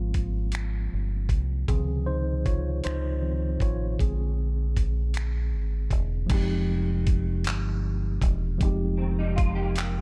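Lightly reverberant, this short cut from a longer slow R&B piece in a straight 6/8 feel has a tender, intimate mood. A mellow, clean tine electric piano, heard through its built-in speakers, carries the chords and takes a solo through the opening 6.3 seconds, moving through Ab6/9, Dbmaj9 and Bb9 before settling on Fm9 as the second section begins. Beneath it, a deep dub fingered electric bass sits up front with a dark, round, punchy tone, played direct and amped. The dusty, sampler-style soul drum kit is compressed and gritty, with a thumpy kick, hi-hat, finger snaps, handclaps and a crash cymbal, all pushed forward in the mix. A warm, picked semi-hollow electric guitar enters only at 9.0 seconds, its hollow-body tone colored by ensemble chorus and analog delay.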